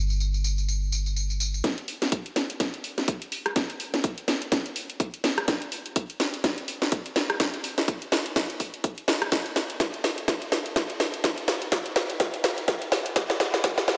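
A lush, wet hall reverb with a 1.8-second tail surrounds this feel-good, joyful piano house clip, cut from a longer piece and tuned to A4 = 442 Hz. It moves at 125 BPM in 4/4 with a 58% swing on the sixteenths. It opens with a solid, round FM bass sitting up front on a low G1: digital and dark, with a fast attack that then decays and pumps against the sidechain, before it stops at 1.6 seconds. The house drum kit runs from 0.1 seconds to the end, placed up front with hi-hat, rim click, tambourine and a cracking snare. Its high-pass-filtered sound is layered and tape-toned, re-recorded in a small room. From 1.6 seconds a punchy, layered electronic kick joins, set lower in the mix, as the rest of the clip becomes a build-up and drum fill.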